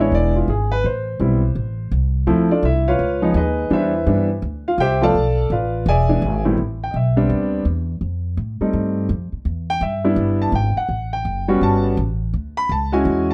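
A jazz piano trio excerpt in 4/4 at 167 BPM, with a relaxed, playful mood and a swung eighth-note feel. The grand piano carries the melody and solos throughout the full 13.3 seconds, its natural tone and long sustain sitting up front across a range from A2 to B5. Beneath it, the upright bass is played pizzicato with a woody, thumpy sound from steel strings, holding the low end from E1 to A2 and also placed up front. The harmony moves through rich jazz changes, opening on E7 and Am, passing through Db9 and Bm7b5, then turning at 6.6 seconds to Am11 and F9 before landing on Dmaj9#11 at 12.3 seconds. Moderate studio reverb and a dark, warm production give the pair a cozy, intimate setting.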